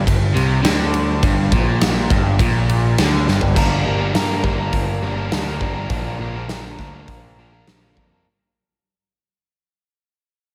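Classic rock with a brooding, swaggering feel, this passage is cut from a longer piece and moves in a straight four. A crunchy, double-tracked electric guitar sits up front, playing a picked, overdriven riff with slapback echo. A growling picked bass, bright and pushed through its own distortion, holds down the low end. A huge arena drum kit with a punchy kick, medium-tuned snare, hi-hat, ride, crash and toms rings out in a big, natural room and stands a little louder than the other parts. A drum fill at 3.3 seconds leads into a fade-out that begins at 3.6 seconds, while the harmony moves from a Gm chord to Bb at 5.9 seconds. Light reverb and small room ambience frame the sound.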